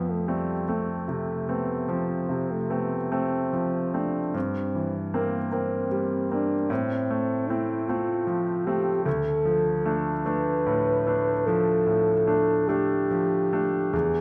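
In a 12/8 that bends freely with rubato, this romantic classical duo for French horn and grand piano unfolds at an unhurried, yearning pace. The horn carries the melody in a mellow, distant voice, its soft attacks and light vibrato giving the line an elegiac, classical poise. Beneath it, the concert grand accompanies with a bright, brilliant tone, present and up front, its deep bass anchoring the harmony as it moves from F through C7/G and F/A to a darker D minor at 9.1 seconds. Both instruments sound together from the opening to the close at 14.2 seconds, framed by the generous reverberation of a recital hall that lends the horn a roomy glow. Cut from a longer piece, the passage feels like a sorrowful expression of longing.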